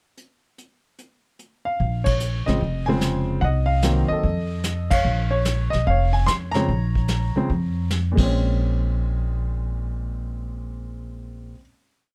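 A vintage brush kit opens this short, swinging, cool jazz piano trio piece at 0.2 s, sweeping the snare over a punchy kick with a rolled-off top. A clear, intimate grand piano enters at 1.7 s, its action noise audible as it states a motif-based melody in sentence-like phrases over syncopated, rootless comping through Bbm9, Cm7b5 and F7 in Bb minor at 147 BPM, and upright bass joins it up front at 1.8 s with a woody, thumpy pizzicato two-feel. The band hits together on accents; the drums stop at 8.2 s, and piano and bass close on a final Bbm9 in a close, dry sound.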